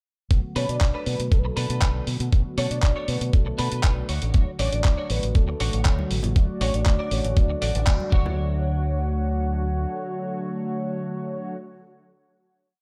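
Opening at 0.3 s on a Bm7 chord, this feel-good, groovy nu-disco piece in D major at 119 BPM sets a thumpy, up-front four-on-the-floor electronic kick and a gritty sampler-style kit of handclaps and hi-hats beneath a bright, octave-jumping fingered bass with an envelope filter, dark sidechain-pumping synth brass with chorus, 12-bit sampler grit and tape echo, and a filter sweep on an analog polysynth, while a soft octave-layered synth lead with tremolo and diffuse ambient delay plays hook phrases over clean picked funk guitar chords, ringing congas join at 6.0 s, and after a band accent the groove gives way at 8.4 s to a final hit where the lead, brass and guitar carry on under light reverb.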